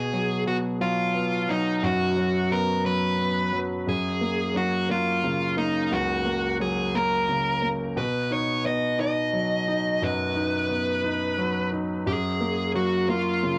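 Tender and swaying, this short cut from a longer six-eight pop ballad moves at a slow 59 BPM in a straight 6/8 feel, tuned slightly low to A4 = 439 Hz. An overdriven electric lead guitar carries the melody throughout, its picked tone dark and smooth, colored by analog delay and sitting up front between D#4 and D#5. Beneath it, a concert grand piano plays the accompaniment from C#2 up to D#4, clear and intimate with deep bass, long sustain and audible action noise, its polished sound given a cassette tape character. The harmony moves from B5 to F# at 3.9 seconds, back to B at 8.0 seconds and to F# again at 12.1 seconds. A moderate studio reverb surrounds the pair, and the whole has the feel of a home recording made on cassette.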